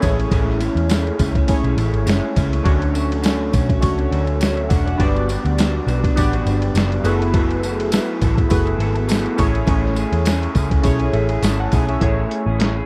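A dry, close 1970s-style studio sound with light reverb frames this nostalgic, sunny indie and bedroom-pop excerpt, where muffled, pitched-down sampler-style drums with a thumpy kick and overdrive sit under a dark, foam-muted picked bass up front, a slightly broken-up electric guitar through a small old amp with subtle chorus and vibrato, sawtooth analog keys treated with chorus, phaser and cassette tape that add a fill at 10.8 seconds, and a jingly tambourine in the background, over a gentle swing and a progression of Amaj7, Dmaj7, Gmaj7 and F#m11.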